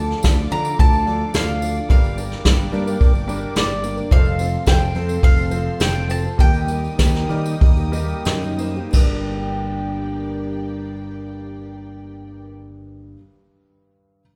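Up front, a vintage brush drum kit sets a dark, rolled-off pulse of punchy kick, medium-tuned snare, hi-hat and crash in this wistful, bittersweet indie folk piece in G minor, cut from a longer work and moving in 4/4 at 87-109 BPM with a building arrangement. A round, double-strung mandolin carries the melody over a fingered electric bass, while a felt-muted upright piano adds mellow, intimate accompaniment with audible action noise. A shimmering, octave-doubled twelve-string acoustic guitar sits in the background alongside a jingly tambourine, and a dark studio string section holds woody, bowed chords with light vibrato and a soft attack. The chords move from Dm through Gm, F and Eb, and the tempo slows between 4.1 and 8.9 seconds as a felt piano fill arrives at 7.6 seconds. The mandolin stops at 8.2 seconds, the harmony settles on Gm at 8.9, and the drums drop out at 9.1, with the tambourine following shortly after as the other parts continue in a light reverb.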